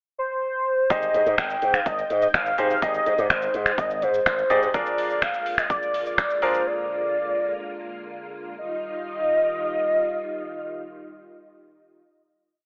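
A velvety, detuned synth lead with chorus carries an upbeat, euphoric dance-pop melody across this short piece, joined at 0.9 s by a punchy four-on-the-floor house kit of kick, hi-hat, snaps and shaker, a bright slap bass through an envelope filter, pushed close-voiced grand piano chords and a vintage organ-like string pad, all set in a lush hall reverb with a telephone-like tone before settling on a final chord at 8.6 s.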